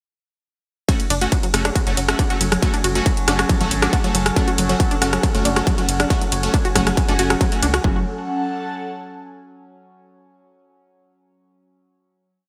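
A distorted, overdriven electronic kick pounds four-on-the-floor at 138 BPM in straight 4/4, with programmed closed and half-open hats, ride and rim clicks on top and a punchy off-beat sawtooth sequencer bass pumping underneath, driving a dark, intense peak-time techno piece in F# minor from 0.9 seconds. A tight, detuned synth riff loops a 5-step sequence that drifts against the bar, while thick, aggressive rave stabs fire dotted-rhythm chords moved in parallel, soaked in chorus, reverb, cassette tape colour and digital delay. A resonant drone with moving overtones enters at 1.5 seconds, and an airy, breathy pad of slowly shifting chords rides in the background into the final chord, lingering until 9.5 seconds, all within a bright 1980s-style digital production.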